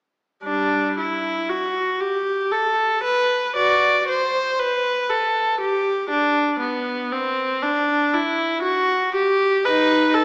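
Set in 3/4 at 59 BPM, this baroque-style suite movement moves with a flexible, rubato feel that gives it a dance-like, flowing character. A single viola plays alone in G major from 0.4 to 10.2 seconds, its bowed line ranging from G3 up to D5. The tone is clear and focused, with vibrato, and the instrument sits close and up front in the mix. Around it, a generous recital-hall reverb with a 1.8-second decay lends the sound a lingering bloom, while the overall playback has the character of a small speaker. Cut from a longer classical piece, this brief passage captures one player shaping an unaccompanied, gracefully unhurried melody.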